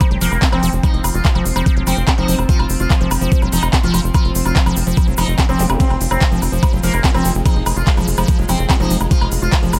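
A driving straight 4/4 pulse at 145 BPM anchors this alien, psychedelic trance excerpt in F minor, where an up-front overdriven knocking kick and a crisp, overdriven big-room kit of handclaps, hi-hat, ride cymbal and woodblock sit over a tight, punchy sequencer bass on F1, while a squelchy, resonant acid bass riff with phaser, dub echo and sidechain pumping, a buzzing, shimmering plectrum-plucked sitar melody, a grainy egg shaker, a detuned, overtone-sweeping drone of sustained chords in the background, and a brief zap at 5.6 seconds fill out a dry mix.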